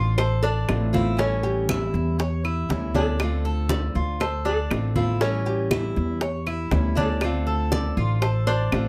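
A straight 4/4 groove at 119 BPM drives this nostalgic, danceable Cuban son and guajira excerpt in D minor. From 0.2 seconds, tight, high-tuned bongos sit close and dry, with bright, low-tuned, thin-skinned congas and woody claves in the background. A growly, thumpy pizzicato upright bass is up front. A metallic tres with double strings picks arpeggios, and two small fingerpicked nylon-string guitars, one on the melody and one on accompaniment, one warm and the other bright, trace a Dm7 to A7 progression in a modest small-room reverb.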